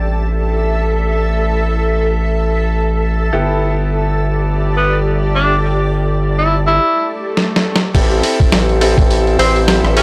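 A gritty, saturated synth bass sits up front from the first moment, its resonant, plucky tone driving this funky, playful glitch hop excerpt with a swung sixteenth-note feel. Above it, a bright baby grand piano plays stabs coated in vintage 12-bit sampler grit and tape echo, pumping alongside a cloudy, evolving granular pad that pumps as well and whose blurred, detuned tone carries its own reverb. The harmony moves from Am7 to G69 before returning to Am7. At 4.8 seconds a clear tenor saxophone enters with a vintage, pop-style solo of scooped notes, trailed by tape echo. An electronic swell rises from 7.0 seconds, and at 7.4 seconds a pitched-down, compressed boom bap kit with a medium-tuned snare, rim clicks, hi-hat and crash enters with a drum fill. At 7.9 seconds the drop arrives as a thumpy electronic kick joins the kit, both re-recorded in a large room for a dry, hardware-rough character.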